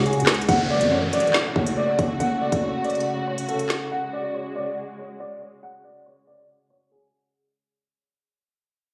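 Menacing, cold drill hip hop in a half-time feel, cut from a longer piece: a dark, intimate baby grand piano carries the melody through a low-pass filter and tape echo, its action noise audible, over close, bowed studio string chords with vibrato. A growling, buzzy 808-style bass and an up-front electronic drum kit with a hard-clipped kick, woody snare, crisp hats, rim clicks and handclaps drive the opening alongside a downlifter, with the bass and drums stopping at 3.8 s to leave piano and strings under a filter sweep and fade-out until 7.3 s. The sound suggests a phone recording in the room, with light reverb and compression.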